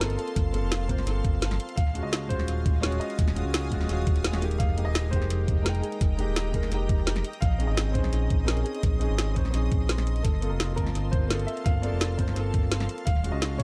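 A straight, rolling drum and bass groove in 4/4 drives this soulful liquid piece, with a gritty, thumpy electronic kick arriving at 0.4 seconds and briefly dropping out between 4.2 and 4.6 seconds. An electronic drum kit adds a woody snare and bright hi-hats, re-recorded in a small room and touched with tape echo. A smooth synth bass built from sawtooth and square waves sits up front, sustained and edged with ring modulation. A dark baby grand piano carries the melody with short sustain and audible action noise, while a felt-muted upright piano plays soft, vintage accompaniment, both trailed by tape echo. Over the minor eleventh chords, a shimmering, ethereal ambient pad holds sustained harmonies with chorus, built-in reverb and sidechain pumping, set in a mix that is otherwise dry and heavy with echo.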